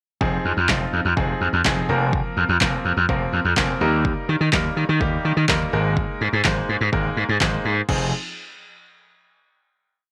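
An overdriven slap bass, gritty and punchy, sits up front in this short, confident dance-pop piece, playing octave lines with slides and pumping against the sidechain. A deep house kit drives a four-on-the-floor beat with a deep kick, a fat snare layered with handclaps and a crash cymbal, while a brilliant, polished grand piano adds short, syncopated chord stabs in drop-2 voicings that also pump. The energetic verse moves through Fm7, Bbsus2/F, Eb and Absus2 in a light, digital reverb before landing on a final Fm7 at 7.9 seconds.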